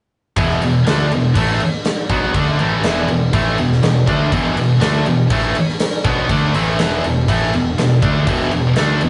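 A straight 4/4 pulse at 122 BPM drives this short hard rock excerpt, cut from a longer piece, with powerful, anthemic energy around an E5 chord. Two high-gain electric guitars play the riff from 0.4 to 9.1 seconds: a scooped, picked one sits up front while a heavier, distorted one fills in behind it, both spanning E2 to D4. Beneath them a growling picked electric bass with overdrive holds down the low end in the background, direct and amped with a bright edge. A huge acoustic arena drum kit sits up front, its punchy kick, medium-tuned snare and bright crash cymbal framed by a pumping hall sound. The whole take has the rough feel of a rehearsal room, with a short, wet booth ambience and a dull top end.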